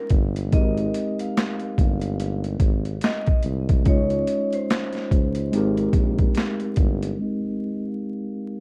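A ringing vibraphone melody, filtered and bathed in plate reverb, opens this mellow, nostalgic lo-fi hip hop excerpt in Ab major over a clean tine electric piano, drifting through Dbadd9, Abmaj7, Dbmaj9 and Abmaj9 chords at a relaxed, swung 72 BPM. From 0.1 seconds a soft-attack tuba plays a jazz-style bass line with light vibrato and scooped notes, beneath an overdriven boom bap sampler-style kit: thumpy kick, high-tuned snare, hi-hat and handclaps, pitched down, compressed and up front with 12-bit grit. At 7.2 seconds the tuba and drums stop, and a filter sweep carries the keys and vibraphone to the end at 8.6 seconds, all within a dark production dusted with vinyl crackle.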